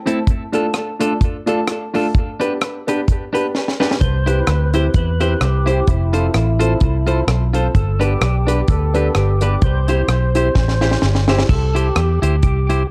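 A lightly swung ska groove at 128 BPM in C major, cheerful and upbeat, opens with a dry deep reggae drum kit with a high-tuned snare and tight kick, twangy clean electric guitar accompaniment and woody upright piano stabs with audible action noise, the guitar and piano both carrying tape echo; after a drum fill at 3.5 seconds, a round, foam-muted fingered electric bass arrives up front alongside a fat, lightly overdriven tonewheel organ melody with percussive third-harmonic attack, slow rotary speaker and tape echo, and the piano drops out at 11.4 seconds in this dark, lightly reverberant cut from a longer piece.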